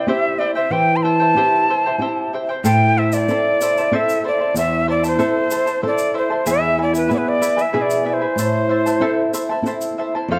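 Andean folk in a straight three, wistful yet festive, where an airy quena with vibrato and a chiff carries the melody up front over fingerpicked charango shimmering on its double strings and a fingerpicked flamenco guitar, joined at 2.6 seconds by a grainy egg shaker, all set in a dark production with moderate recital-hall reverb, cut from a longer piece.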